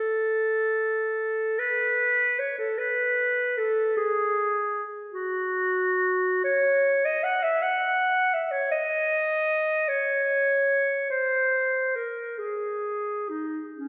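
A warm solo clarinet carries this short classical fragment, cut from a longer piece, playing freely in 6/8 with expressive rubato across its 13.9 seconds. The mood is yearning and meditative, and the clarinet ranges from C#4 to F#5. A wet concert hall reverb gives it a distant, roomy sound, as if heard from further back in the hall.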